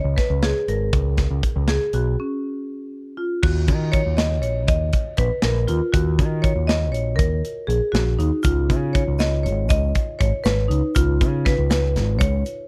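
Bright and intricate, this progressive instrumental in 5/8 sets a dark, smooth marimba melody over a growling, overdriven picked electric bass and a tight metal drum kit with a medium-tuned snare and a rolled-off top, all up front. Minor chords with added colour tones open the passage before a break at 2.2 seconds. A grainy, compressed tube shaker then slips in quietly behind the band at 8.4 seconds as the harmony moves to a dominant chord, in a dark production with light reverb and plate reverb on the marimba.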